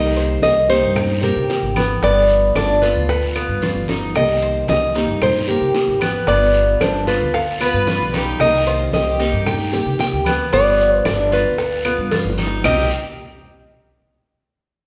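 A wet, roomy studio reverb surrounds this short cut from a longer Cuban son and guajira piece, the band heard playing live together in one room at a danceable 113 BPM in a straight 4/4, with a nostalgic mood that settles into C harmonic minor from 4.2 seconds over a Cm7 and G7 progression. Up front, a fingerpicked classical nylon-string guitar carries the melody, while a dark, boxy, ladder-braced acoustic guitar with old strings fingerpicks the accompaniment underneath. A bright Cuban tres with metallic double strings spins arpeggios, and a thumpy pizzicato upright bass on gut strings anchors the low end. The percussion sits mostly in the background: ringing congas, tight high-tuned bongos struck with hard hands, woody claves, a raspy, saturated guiro and grainy maracas, with drum fills at 3.9 seconds and again near the close. At 7.6 seconds a distant violin section enters with a soft-attack, floating sul tasto second line before the passage lands on a C7 chord at 12.6 seconds.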